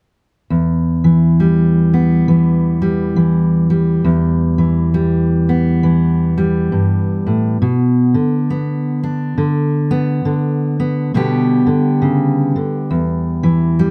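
A close, detailed and nearly dry recording puts a dark, full-bodied fingerpicked steel-string dreadnought up front in this wistful, intimate solo folk excerpt at a slow 68 BPM in E minor with a gentle swing, as the lone guitar moves from Em to Bm at 7.6 seconds and through G/B back to Em before it is cut off at 13.9 seconds.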